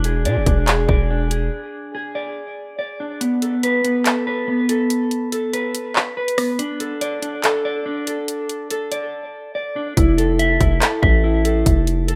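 Drill-style hip hop at 142 BPM in a half-time feel, tense and cold, with a dark, clean electric guitar playing fingered arpeggios over chords moving from E7 through Asus2 and D5 to Fmaj7. A drill drum kit sits up front with a hard-clipped kick and warm hats plus handclaps and rim clicks, though the kick drops out from 3.2 to 10.0 seconds. A saturated, aggressive 808-style bass with a noise layer and fast attack hits only at the start and returns at 10.0 seconds, all in a rough home-demo mix with moderate studio reverb.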